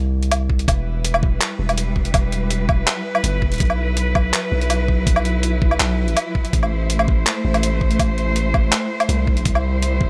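Tense and spacious, this half-time drum and bass passage opens on a deep, sine-toned 808-style bass with tube saturation, soon joined by a gritty, pitched-down boom bap sampler kit of handclaps, hi-hat and woodblock and a thumpy, compressed electronic kick, both set in studio ambience. From 0.7 s a lush, bowed cello section sustains vibrato-rich chords moving from Em through Bsus4 and Am to C, its sound pumping against the sidechain beneath a digital ambience.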